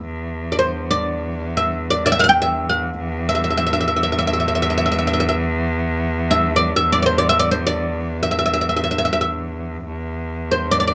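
A bowed cello opens the recording at 0.0 seconds, holding a rich, focused drone on E2 with vibrato and a smooth top. At 0.5 seconds a fretless oud joins to carry the melody between C5 and G5. It is plucked with a plectrum, and its double strings give it a woody, deep voice. This Arabic maqam ensemble piece moves in free time with a melancholic, longing mood, and the passage is cut from a longer performance. Both instruments sit up front in a light reverb, with the oud louder than the single cello player. Both play through to the close at 10.9 seconds.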